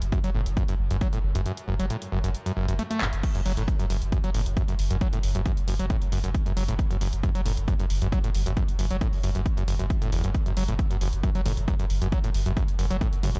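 A straight pulse drives this short cut from a longer piece of peak-time techno, its overdriven, up-front electronic kick hitting heavy and layered before dropping out between 1.5 and 3.2 seconds, with a drum fill landing at 3.0 seconds. Around it, a punchy analog drum machine supplies crash cymbal, handclaps, hi-hat and toms, roughened by overdrive, with sidechain pumping on the hats, cymbals and toms. Underneath, a deep, thick sub bass holds a sustained F#1 with a triangle tone, fast attack, tube saturation, a low-pass filter and its own sidechain pump. Out front, a screaming acid line ranges from E2 to A3, squelchy and aggressive, its sawtooth tone resonant and distorted with a filter sweep, fast attack and decaying notes, colored by chorus, digital delay and sidechain pumping. The mood is driving and industrial, set in a digital ambience with a dark, warm production.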